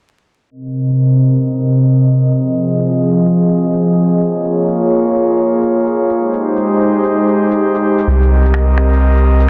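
An airy, breathy pad carries this nocturnal, rainy future garage excerpt, holding detuned chords from Cm7 through Fm7, Bbm7 and Abmaj7 with chorus and a vintage 12-bit sampler grit, while a filter sweep runs across the whole passage. Electronic shaker and finger snaps sit far back in a small room, with soft clipping on the snare and a swung sixteenth-note feel. A deep, round dub sub bass with tube saturation arrives up front only at 8.1 seconds, all wrapped in light reverb, vinyl crackle and a dense, heavily limited master.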